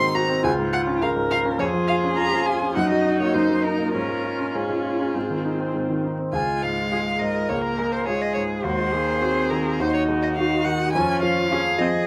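This quick classical-period movement for piano quartet opens with all four players at once, in a stormy, dramatic mood at 104 BPM in 4/4 and D-flat major, cut from a longer piece. Up front, a rich violin carries the melody high in its range with smooth, even bowing and vibrato. A dark cello sings a second line in a surprisingly high register, with soft attacks, portamento, expressive vibrato and a smooth top. The accompaniment comes from a clear, intimate baby grand piano, with its action noise audible, and a distant viola bowing evenly with vibrato. The harmony moves from D-flat through E-flat minor over G-flat to A-flat, and a new section at 6.3 seconds leans on an A-flat seventh before settling back toward D-flat. The viola drops out at 11.9 seconds, just before the others, all set in a moderate studio reverb.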